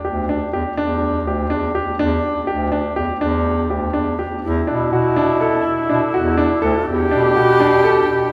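A clear grand piano opens with arpeggios over a roomy, distant bass clarinet playing the low bass line, setting a pensive yet urgent mood in an uneven five-eight chamber style. At 4.4 seconds a breathy, bright shakuhachi enters up front with a second line, its bamboo tone carrying a tongued chiff and a reedy edge. The whole fragment, cut from a longer contemporary piece, sits in the long, wet reverb of a cathedral-like hall.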